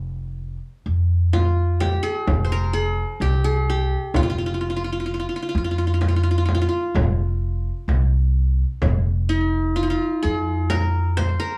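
A stately, passionate Arabic maqam ensemble piece in maqam rast on F opens with a woody, thumpy pizzicato upright bass on gut strings, alone and up front until the bright-edged, plectrum-plucked qanun and a deep, large frame drum enter at 1.3 seconds. Moving in 10/8 at 128 BPM counted in eighths with a straight feel, the qanun's triple strings carry the melody between E4-50c and C5 with a slapback echo, while the frame drum has a live-room character. The small room adds little reverb, and this cut from a longer piece stays within a single section to its close at 11.6 seconds.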